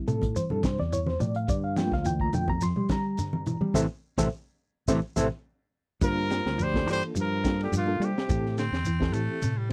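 Driving and intense, this short afrobeat cut from a longer piece moves at 106 BPM in 4/4 with a light sixteenth-note swing, sitting in G dorian over chords that shift between Am7, Gm7 and Am. A reedy electric piano with fast tremolo sits up front and carries the opening as a solo, while a dark, clean semi-hollow guitar plays arpeggios in the background and a round, punchy fingered bass anchors the low end. The crunchy breakbeat kit has a saturated, gritty character with a punchy kick, high-tuned snare and dark cymbals, joined by thick-skinned, damped congas and a grainy shekere. The band hits an accent from 3.8 to 6.0 seconds, and the congas drop away around 5.3 seconds. At 6.0 seconds a clear, distant trumpet takes the melody with light vibrato, alongside a growling tenor saxophone on a second line in the background. At 8.6 seconds a raspy, punchy baritone saxophone takes over the second line. 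The sound is dry and close, in a 1970s studio style with light reverb.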